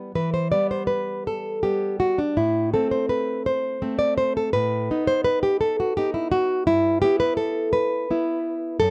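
A dry, close recording with a small room's reverb places a single nylon-string guitar up front, in a sound that recalls a 1970s studio. This short cut from a longer romantic piece for solo classical guitar is wistful and passionate, moving in a slow, rubato 6/8 at 56 BPM, counted in dotted quarters. The fingerpicked guitar has a warm acoustic tone and spans F#2 to D5 as it carries the whole performance alone, from the opening through to 8.9 seconds. In E minor, the harmony moves from Em to Am at 2.4 seconds, then through B7/A before settling on Em/G. The guitar is tuned slightly above standard pitch, at A4 = 441 Hz.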